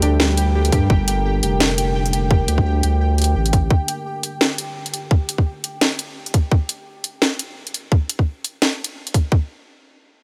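Half-time drum and bass at 171 BPM with a swung, spacious and dark feel, moving from G minor to D minor as overdriven drums with a cracking snare and bright hats drive over a thick saturated sub bass that stops at 3.7 seconds, a tight up-front kick arriving at 0.7 seconds, a deep detuned sawtooth pad carrying a filter sweep and sidechain pumping, a bright, pulsing tempo-synced gated texture, and a brief felt-muted upright piano arpeggio with delay and audible action noise in the background, all in light reverb.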